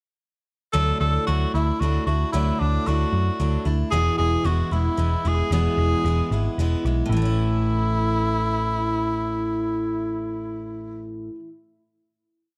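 Opening at 0.7 seconds with a bright tenor saxophone playing a pop-style call-phrase motif with light vibrato and slapback echo, a full-bodied jumbo steel-string acoustic guitar strumming sixteenths in open chord shapes, and a round, punchy hollow-body electric bass driving eighth notes, this short, hopeful folk rock and heartland rock piece in 3/4 at 113 BPM moves through a Dadd9-to-E pre-chorus before settling on a final A chord at 7.1 seconds, set in light reverb with a dark, warm production.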